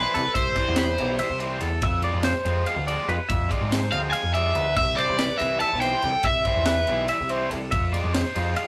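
Driving at 285 BPM in 7/8 with a straight feel, this math rock and midwest emo passage, cut from a longer piece, sits in C major with tuning at A4 = 439 Hz and moves between playful and wistful. An up-front cranked stack guitar carries the overdriven lead melody between B4 and A5, dropping out at 1.6 seconds and returning at 3.9 seconds until 7.5 seconds. Meanwhile a twangy, clean twelve-string electric guitar picks compressed arpeggios from A4 to B5. Beneath them a double-tracked overdriven electric guitar plays a picked riff from E3 to F4, and a growling picked bass, direct and amped with overdrive, holds the low end from B1 to Ab2. A crisp, airy fusion drum kit with a high-tuned snare, punchy kick, crash and ride adds a polished studio-room snap as the harmony moves between Cmaj7 and Fm6, all set in light reverb with a rough rehearsal-room character, warm saturation and lossy compression artefacts.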